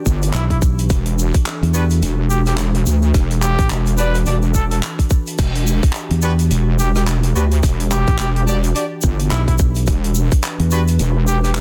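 Funky and gritty, this glitch hop excerpt moves at 107 BPM in 4/4 with a swung sixteenth-note feel, sitting on a single Em9 chord in E minor throughout. The low end is heavy and up front: a wobbling, saturated wobble bass with chorus and overdrive sits beside a fingered electric bass that sounds warm and direct through tube saturation, while a tight, layered electronic kick punches until about 10.4 s. A natural, small-room funk kit adds crash, handclaps, hi-hat and rim clicks, and a grainy, close tube shaker ticks brightly on top. A warm trumpet carries the melody in a solo, classical style, trailed by dub echo, and from 1.7 s a clear, punchy horn section adds tight, octave-doubled stabs that pump with sidechain compression and carry their own dub echo. Beneath it all, a dark, nostalgic pad warbles like worn tape in the background, its lo-fi chords breathing with sidechain pumping and built-in reverb. 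The mix is dense and heavily limited with a small room ambience.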